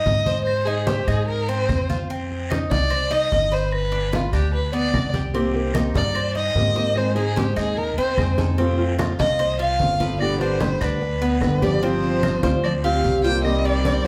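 A straight 4/4 groove at 148 BPM drives this warm, danceable Cuban son and guajira fragment, cut from a longer piece, with low-tuned congas (bright, thin-skinned, played with soft hands), woody claves and a raspy guiro sitting in the background. Up front, a thumpy upright bass on gut strings plucks the bass line while a bowed violin carries the melody with vibrato, portamento and a soft attack, sounding expressive. A picked Cuban tres adds metallic, double-string arpeggios throughout. At 5.3 seconds a fingerpicked flamenco guitar joins the accompaniment with audible finger squeak, and at 11.4 seconds a mellow duduk enters with a folk-style second line of scooped notes, carried by analog delay. The harmony moves through Ab, F and G to Cm7, with a G7sus4 arriving at 11.8 seconds, and a large studio reverb places the ensemble further back in the room.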